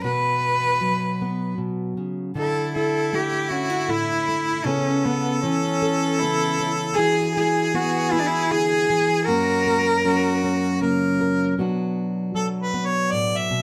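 A straight, unhurried 3/4 pulse at 78 BPM carries this reflective, melancholic acoustic folk passage in B minor, cut from a longer piece. Fingerpicked steel-string acoustic guitar, plugged in and up front, supplies the accompaniment throughout, moving through B5, Dsus2, Aadd9/C#, Eadd9 and F# before settling on B minor. A single bowed cello carries the melody from the start with a clear, earthy tone, light vibrato and an airy bow, sitting close in the mix until it drops out at 10.8 seconds. A warm harmonica enters at 2.4 seconds with a second line, its soft attack and light vibrato lending a classical-style grace, though it sounds distant and roomy. At 11.6 seconds the harmonica takes a brief solo over the guitar, and moderate studio reverb gives the whole small ensemble a gentle sense of space.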